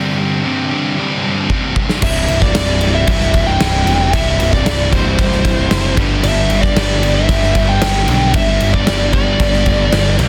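Quiet-loud alternative rock at 114 BPM in C major, restless and bittersweet, this short cut opens on a half-time break where a sludgy, warm overdriven guitar and a thick, bright fuzz guitar grind out a riff over a Gsus4 chord until the big rock drum kit, punchy and up front with bright cymbals, rolls in with a fill at 1.5 seconds. At 2.0 seconds the full band lands on C, moving to G at 6.0 seconds: a smooth overdriven lead guitar sings a high melody, a fuzzed, picked electric bass anchors the low end, and a very quiet double-tracked crunchy guitar adds its riff beneath. The sound is dense and heavily limited, with studio reverb, and the drums carry a big-room presence.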